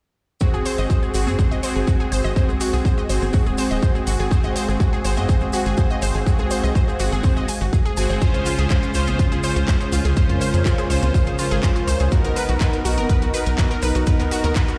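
A straight 4/4 progressive house groove, expansive and hopeful, is driven by a punchy up-front electronic kick, a tight sawtooth sequencer bass, a house kit with handclaps and crisp sidechain-pumped hi-hats, very quiet hard-hand bongos, congas and cowbell, and grainy background maracas, while a lush detuned unison pluck arpeggiates with tape echo, soft supersaw stabs carry phaser and echo, and a smooth, chorused analog pad holds sustained chords under a filter sweep, its pumping sidechained like the pluck, supersaw and bass, as Ab7 moves to Dbmaj7 at 8.2 seconds and Bmaj7 at 12.1 seconds, all played through a big sound system in a bare stone-room reverb.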